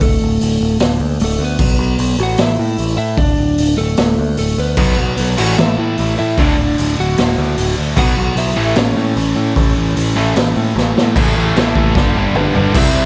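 A dark, slightly broken-up lead guitar melody opens this rebellious, upbeat punk rock cut over growly, punchy picked bass and a gritty, boomy garage drum kit in a half-time feel, until at 4.8 seconds a double-tracked, scooped high-gain guitar and two tight, bright distorted rhythm guitars enter behind them, with drum fills pushing toward a short new section at 11.2 seconds before the fragment cuts off.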